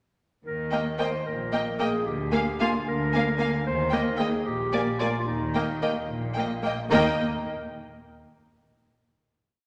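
In a straight 6/8, this brief, mischievous and whimsical film cue sets a vintage-toned clarinet up front from 0.4 s, while two violin sections, one rich and one clear and focused, join a lush viola section from 0.7 s on bowed after-beat and sustained chords, and a smooth cello section in the background plants the bass on the beats, doubled by a close double bass section, all bathed in the reverb of a wet scoring stage until a final chord at 6.9 s.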